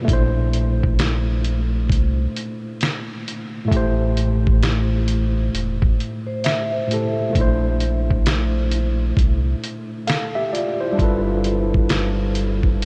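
A worn, slightly out-of-tune tine electric piano opens this nostalgic, hazy lo-fi hip hop excerpt, lightly overdriven and filtered, before a deep sine sub bass and a muffled, pitched-down sampler-style drum kit with a thumpy kick and fat snare join at 0.1 seconds, all swung and unhurried. Chords drift between Bbmaj9#11, Am7 and G13, and for a brief moment from 6.3 to 7.3 seconds a mellow, ringing vibraphone with soft mallets and slow motor vibrato drifts in through a filter and analog delay. The whole mix is soaked in a huge ambient reverb with a cassette-tape dreaminess, keeping the drums and piano up front.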